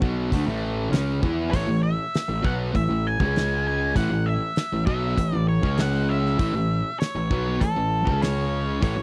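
A damped 1970s-style drum kit sits up front in this driving, confident classic rock excerpt, its fat snare and tight kick cutting through alongside hi-hat at 99 BPM in a straight 4/4 feel. A fuzz-toned picked electric bass, round and punchy, holds down the low end with an overdriven, amped edge. Two rhythm guitars play the riff together in A major, one distorted and one sludgier with overdrive, both picked with a warm tone. From 1.5 seconds an octave-fuzz lead guitar enters with a dark, distorted melody, pushed forward in the mix. The harmony moves between A, C#5 and A5 chords, and the whole thing has the dry, close feel of a 1970s studio with little reverb.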